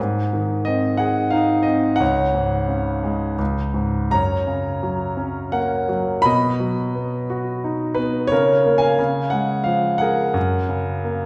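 A clear, intimate grand piano plays alone from the first moment, a sunny classical solo in F# major at 87 BPM in 3/4, shaped with lyrical rubato across a range from C#2 to B5. The instrument sits up front with a natural tone and audible action noise, framed by the generous, wet reverb of a recital hall, as if captured in a church or concert hall. This brief cut from a longer piece moves through harmonies on G#, C#, F# and B, settling on F# at 10.4 seconds.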